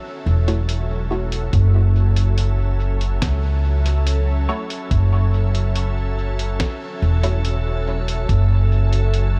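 A soft, organ-like pad opens this excerpt of ambient dub, holding sustained F#m7 chords with a slow attack, ensemble chorus and its own reverb, its detuned sine tone pure and calm. Almost at once an acoustic upright bass sits up front, played pizzicato with a woody steel-string tone, grounding the deep, spacious mood in F# minor at 71 BPM in a straight 4/4. A lo-fi sampler-style kit adds hi-hat and a medium-tuned snare, pitched down, muffled and tape-coloured, with studio reverb and dub echo. In the background, a muted chord stab of detuned sawtooth and square waves gives a quick filter pluck through phaser, subtle chorus and dub echo until 7.4 s. A compressed, thumpy electronic kick enters at 1.5 s, set back in the mix under studio reverb, and light digital ambience surrounds this passage cut from a longer piece.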